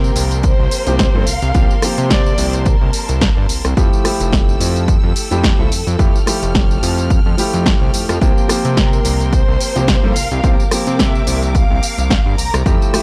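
A dry, gritty small-room recording carries this sunny, groovy nu-disco excerpt at 108 BPM in C mixolydian, where an up-front electronic kick and a layered house kit with a punchy snare, hi-hat, rim click and tambourine play alongside a fat, detuned sawtooth bass with a filter sweep, while a clear, boxy grand piano with tape echo and a lush, bright string section in the background both pump under sidechain, and a dark, expressive violin section with vibrato and portamento sings the melody through tape echo from 0.0 to 3.5 s and again from 8.8 s over chords moving from C7sus4 to Fmaj9 and back.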